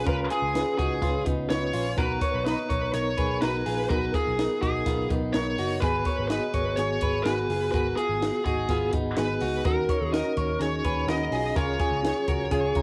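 Nostalgic and bright, this jangly indie pop piece moves at 125 BPM in a straight 4/4, captured as a home cassette recording in a small booth. A distorted, high-gain lead guitar sits up front carrying the melody, while a reedy, worn, slightly out-of-tune electric piano with fast tremolo plays accompaniment through its built-in speakers and adds a brief fill at 12.5 seconds; a clean, picked electric guitar plays arpeggios through spring and plate reverb. Underneath, a dark, foam-muted picked bass and a dry cocktail drum kit with a high-tuned snare and punchy kick support chords moving from Cb6 and Cbmaj7 to Ebm7 and Db.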